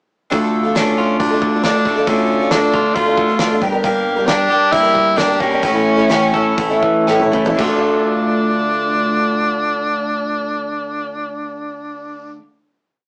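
This short, complete piece sounds like a rough rehearsal-room take, with tube saturation, a small-speaker character and a moderate small-room reverb lending it a dusty, wistful air. It sits between folk rock and heartland rock in a straight 4/4, moving from Dm through Gm and A before returning to Dm. Up front, a bright, punchy tenor saxophone carries a pop-style, motif-based melody in period phrases, with vibrato. Beneath it, a full-bodied, shimmering twelve-string acoustic guitar strums sixteenths in octave-doubled open chord shapes with audible finger squeak. An electric guitar at the edge of break-up, compressed and slightly broken-up, adds picked arpeggios, while a warm picked electric bass, direct and amped, plays a dotted figure. The damped 70s drum kit, dry and mid-forward with a fat snare and tight kick, sets a big rock groove as the verse slows from 3.8 seconds, then plays a fill into the final chord at 7.6 seconds, where the drums drop out and the other parts hold the closing Dm.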